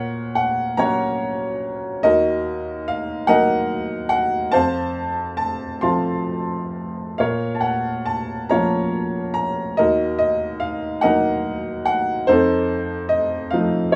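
A boxy, up-front baby grand piano plays alone throughout this reflective, dark classical fragment, a lyrical solo in a slow, rubato 6/8 at about 44-50 BPM (dotted quarters), tuned to A4 = 443 Hz and ranging from Eb2 to C6. Its harmonies move from Gb/Bb through Ebm, F and Bbm to a closing F7 at 12.3 seconds, all within a wet studio ambience with a short reverb tail.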